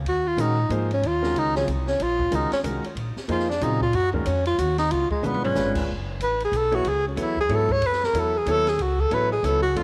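Hypnotic and cool, this fragment of modal jazz swings in 3/4 at 186 BPM, with a breathy, whispered tenor saxophone soloing up front in subtone, using vibrato and scooped notes, its sound trailed by tape echo, over woody, thumpy pizzicato upright bass, a warm concert grand piano with audible action noise, and an open acoustic drum kit with dark cymbals, a high-tuned snare and a boomy kick, whose fill at 5.2 seconds leads the shift from Eb dorian to F# dorian at 5.9 seconds.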